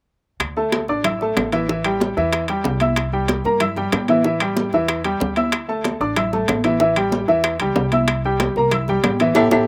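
Dry outdoor sound with little reverb frames this sunny, danceable salsa fragment, where a clear, up-front baby grand piano accompanies a dark, thumpy pizzicato upright bass, bright high-tuned congas, tight bongos, ringing metal-shell timbales and woody claves in the background, before the band hits an accent at 9.4 seconds.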